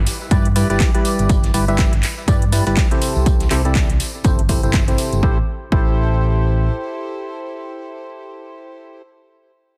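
Soulful and bittersweet, this short cut from a longer piano house track swings its sixteenths with a relaxed, loping lilt. A punchy, overdriven electronic kick sits up front, layered with a house kit of handclaps and metallic hi-hats that carries its own overdrive and a large-room sheen, while a gritty, sampler-style soul kit of hi-hat, snare and tambourine ticks along very quietly beneath, joined by a close, dry tambourine. A round, amped fingered electric bass with overdrive pumps against the kick through the first 6.7 seconds, and a very quiet downlifter opens the first moments. The star is a hollow, organ-like percussive stab with a fast attack and decaying tail, its mellow tone coloured by ring modulation, analog chorus, delay and sidechain pumping, and it runs under a filter sweep through the opening 5.2 seconds. The kits and tambourine drop away around 5.2 seconds and the kick follows by 5.9, leaving the stab and bass to settle onto an Am7 chord after a drift through G6, Em7/G and C6. 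The whole piece sits in a dense, heavily limited modern master with a digital ambience.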